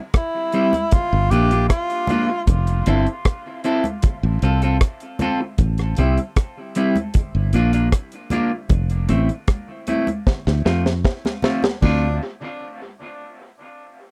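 A dry, close 1970s-style studio sound frames this spacious, deep dub reggae excerpt in D minor at 77 BPM, driven by an up-front drum kit with a tight kick, high-tuned snare and rolled-off top that plays a fill from 10.3 to 11.8 seconds. A round, punchy, foam-muted fingered bass anchors the low end beside a clean, picked electric guitar soaked in dub echo, while ringing congas, also echoed, sit in the background. A breathy, whispered tenor saxophone with vibrato and a soft attack voices a brief, echoing melody at the start and returns at 11.8 seconds, as the chords move through Gm7, Fmaj7 and Am toward Dm7.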